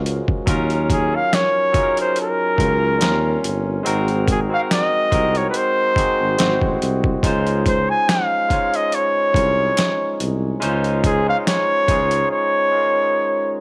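R&B and neo-soul in a soulful, warm mood, this excerpt sets a barky, lightly overdriven tine electric piano and a mellow tuba bass with scooped, vibrato notes over a gritty, pitched-down boom bap sampler-style drum kit with a thumpy kick, while a breathy, whispered flugelhorn carries the intimate melody from 0.9 seconds, touched by slapback echo in a lightly reverberant studio room.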